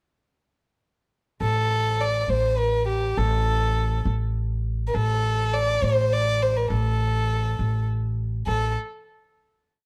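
Longing and hypnotic, this brief Arabic maqam ensemble piece in A maqam bayati moves at a slow 68 BPM in a straight 6/8. A single bowed violin, up front and intimate with light vibrato, a soft attack and an airy sul tasto tone touched by slapback echo, sings an ornamented modal melody between G4 and D5 from 1.4 to 8.7 seconds. Beneath it a woody, growly upright bass plucks a simple root-and-fifth line on A1, all set in a dark production with light reverb before a final note closes the piece.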